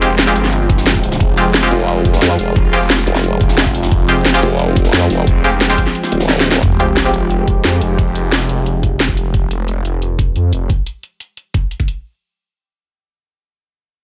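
Tense and aggressive, this cut from a longer dark technical drum and bass track drives at 177 BPM in 4/4 with a straight feel, in F minor, opening on an Fmadd9 chord. A drum and bass kit with a cracking snare and bright hats sits up front alongside a knocking, layered electronic kick, both carrying a small-room character and little reverb. Underneath, a thick, swirling detuned saw bass with phaser, overdrive and sidechain pumping churns low. At 1.7 seconds a wobbling formant-sweep bass with chorus and tube saturation joins as the loudest part. Above them, an evolving, full-bodied pad with ring modulation and chorus holds sustained chords while a nasal, band-passed chord stab with dub echo punctuates the harmony. The kick drops out at 5.9 seconds and a drum fill leads into an impact at 6.6 seconds, where a sub drop rumbles in the background and a filter sweep runs on the saw bass as the second section begins.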